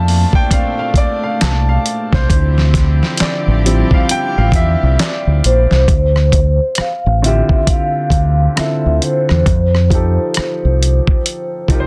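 A round, punchy fingered electric bass sits up front in this sultry, soulful neo-soul excerpt with a swung feel, underpinned by a gritty sampler-style drum kit with a thumpy kick, fat snare, hi-hat, rim click and handclaps. A woody upright piano with audible action noise takes a solo over the opening 5.9 seconds, while a reedy, gut-toned string section holds bowed chords until 5.8 seconds. At 5.5 seconds a mellow vibraphone played with soft mallets enters with a ringing melody, its motor vibrato shimmering in plate reverb over rich jazz-inflected harmony in a dense, heavily limited mix.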